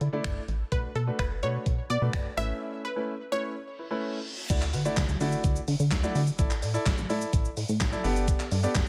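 A carefree, euphoric dance-pop excerpt in D major at 127 BPM opens with all four main parts at once: a gated 80s digital drum machine with a thumpy kick and a gated-reverb snare, a plucky analog bass, a clear concert grand piano and a bright analog pluck carrying the melody. The pluck is round and detuned, with a noise layer, a filter sweep, chorus and tape echo, and it sings between A4 and E5 until it drops out at 4.2 s. Beneath it, the piano and the dark, funky sawtooth bass both pump against the sidechain, the piano sounding intimate and polished with audible action noise and long sustain. A break begins at 2.6 s, a reverse cymbal enters in the background at 3.8 s, and an impact lands at 4.5 s as the drop begins, carried by piano, bass and the sampler-style drums with their crash, snaps, handclaps, hi-hat and shaker. The chords move from Dsus2 through Bm7 and Aadd9 to Dadd9, Asus4 and finally Gadd9, all in a dry, up-front mix with little reverb.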